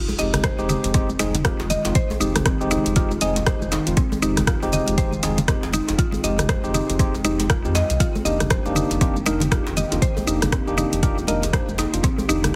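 An overdriven, deep electronic kick sits up front in this spiritual, earthy afro house excerpt at 119 BPM in F dorian, alongside a swung groove of metallic hi-hats, rim clicks, shaker and toms from an afro-pop kit, soft-handed congas in the background and a very quiet, cracking djembe with metal rattles, while a round, dark analog bass pumps under woody, mallet-like synth pluck arpeggios and clean tine electric piano stabs, both carrying tape echo, and a very quiet, ethereal pad drifts in at 1.2 s, all moving from Fm7 to Cm7/F at 8.0 s inside a lightly reverberant, heavily compressed radio sound.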